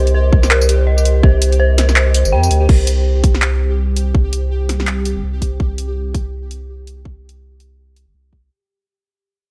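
This dark, heavy half-time drum and bass fragment at 165 BPM, cut from a longer piece, opens on a drop where a thick, saturated sub bass sits up front beneath a moody detuned pad in the background, a pulsing tempo-synced gated texture and an eerie, warbling FM bell playing arpeggios through chorus and digital delay. A hard-clipped electronic kick punches in up front alongside an overdriven kit of woody snare, bright hats, handclaps, tambourine and crash, with the kick dropping out briefly at 2.3 seconds. The bell stops at 2.7 seconds as the track begins a long fade-out, leaving the swung drums, sub bass, sidechain-pumped pad and texture to carry on.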